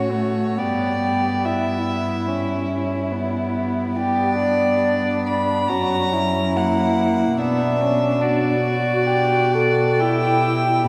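A string quartet begins together in a slow, elegiac romantic movement at 70 BPM in 4/4, its uneven, rubato pulse giving the phrasing a yearning pull as the harmony moves from F#m/A through G and F# to Bm. Up front, a rich first violin carries a pure, floating melody that sounds somewhat distant, while a dark second violin with a smooth top, a viola and a cello sit close and intimate beneath it. All four are bowed sul tasto with soft attacks, the lower three adding light vibrato and the viola and cello an airy bow, inside a long church reverb of 3.7 s, in a brief passage cut from a longer piece.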